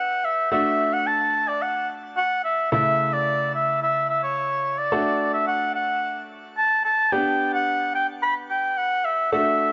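A straight 4/4 pulse at 109 BPM drives this bright, upbeat pop excerpt in D major, moving through G, D, A, D and back to G over its 9.7 seconds. Up front, a warm solo oboe sings the melody in a classical style, with light vibrato, a soft attack and a smooth top, carried on shimmer reverb and delay. Beneath it, a clear concert grand piano gives polished, present accompaniment with deep bass and short sustain, touched by its own shimmer reverb, all set in a moderate studio room with a mellow, rolled-off treble.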